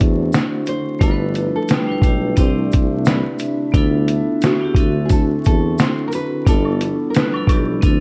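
Lo-fi hip hop with a nostalgic, hazy swing, where a fingerpicked nylon-string guitar melody with finger squeak floats over a ringing, metallic vibraphone accompaniment and a dark, warbling tape-like pad in the background, while a mellow tuba with scooped notes carries the bass, a muffled, pitched-down sampler drum kit with a thumpy kick and fat snare sits up front with 12-bit grit, and faint maracas and woodblock join at 0.3 seconds, all in a dreamy, reverb-soaked mix with vinyl crackle over rich chords from D9 to G13.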